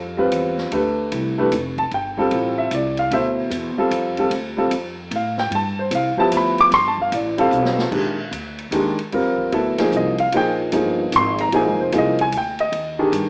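An intimate upright piano, up front with its action noise audible, opens this searching, open modal jazz passage together with a woody pizzicato upright bass, hovering on a G9sus4 chord in a swung 3/4 at 150 BPM. A swinging big-band drum kit joins at 0.3 seconds, with a punchy kick, medium-tuned snare, hi-hat, ride and crash. After a drum fill, the harmony shifts to Bb9sus4 at 7.9 seconds. The whole cut, taken from a longer piece, sits in a moderate studio reverb and is coloured by worn cassette tape with warbly pitch drift and a small-speaker sound.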